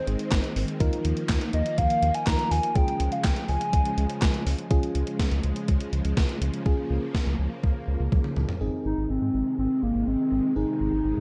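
Lightly reverberant and wistful, this synth-pop excerpt in Ab major moves at 123 BPM: a hollow, woody clarinet-like synth lead with chorus and vibrato carries the melody from 0.0 to 4.5 seconds and returns at 8.9, over a mellow FM electric piano, an evolving vintage string-machine viola pad with ensemble chorus, a round, deep analog bass, and an up-front gated 80s drum machine of thumpy kick, gated-reverb snare, handclaps, hi-hat and toms that rolls into a fill before dropping out at 8.6 seconds.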